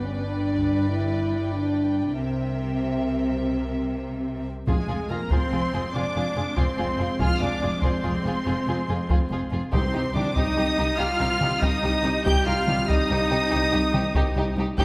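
Heroic yet dark, this excerpt of an epic orchestral film score moves at 95 BPM in 12/8, settling into F dorian at 4.7 s. Lush, vibrato-rich violins carry the high melody over a second violin line, an intense, close viola accompaniment, mellow, punchy French horn chords, expressive cellos in the background and woody double basses, while a hard-stick taiko ensemble strikes briefly near the start and returns from 4.7 s onward alongside a pure, crisp concert flute. A soft, round timpani note sounds very quietly around 9.7 s, and a moderate scoring-stage reverb lends the whole orchestra a sense of space.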